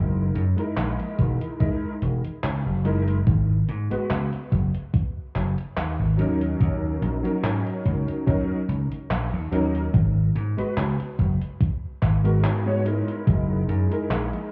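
Vaporwave with a melancholic, nostalgic mood, this short cut from a longer piece moves at an unhurried pace with a light swing. An electric grand piano carries the accompaniment up front, its vintage tone clangy in the low end and thickened by ensemble chorus and analog delay, with long sustain over chords moving from F#13 through G#m7, D#m7 and G#m9 before returning to F#13. An amped slap bass sits alongside it up front, while an overdriven, thumpy electronic kick enters at 1.2 seconds with 12-bit sampler grit. A detuned 8-bit drum machine adds handclaps and hi-hat further back, tape-toned and re-recorded in a small room. Only near the close, at 13.3 seconds, a velvety, detuned synth lead with chorus and vibrato appears in the background on a single note. The whole mix sounds muffled as if heard through a wall, bathed in club reverb and cassette-tape coloring.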